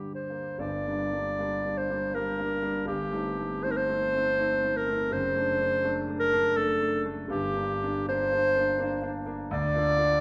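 A wet recital hall reverb with a 1.3-second decay surrounds this short fragment of a romantic classical duo, cut from a longer piece. Up front, a warm clarinet with a smooth top sings the lyrical, tender melody in a classical style, ranging from G4 to D5. A clear concert grand piano, open-sounding and reaching down to a deep bass at F#1, supplies the accompaniment beside it. Both parts play throughout the 10.2 seconds, in G minor at 81 BPM in 3/4, with uneven beats and rubato giving the pulse a breathing, flexible feel. The harmony moves from Gm through Am7b5/G and D/F#, returns to Gm at 7.3 seconds, and turns to Bb/D near the close, all tuned to A4 = 442 Hz.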